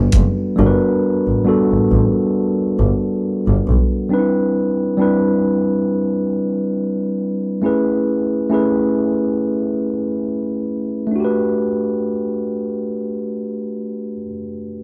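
Smooth and soulful, this R&B excerpt, cut from a longer piece, rests on a gently swung groove led by a mellow, clean tine electric piano that carries the accompaniment through lush major-ninth chords, returning to its opening harmony as a new section begins at 11.2 seconds. A bowed double bass with an earthy tone and light vibrato joins it at the start and falls away at 3.8 seconds, leaving the piano on its own. The sound is dry and close in the manner of a 1970s studio, touched with a digital ambience.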